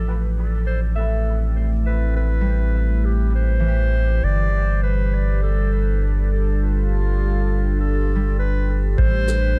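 Ambient dub at 101 BPM in A minor, hazy and deep, where a round, up-front analog bass anchors a solo classical-style clarinet melody with dub echo over a chorused, gritty analog pad moving from Am7 to G7, while a very quiet, muted filtered chord stab, a mellow background harp playing filtered, echoing arpeggios from 1.0 to 9.0 seconds, and a brief overdriven electronic kick and shaker near 9.0 seconds sit in an echo-heavy small-room mix.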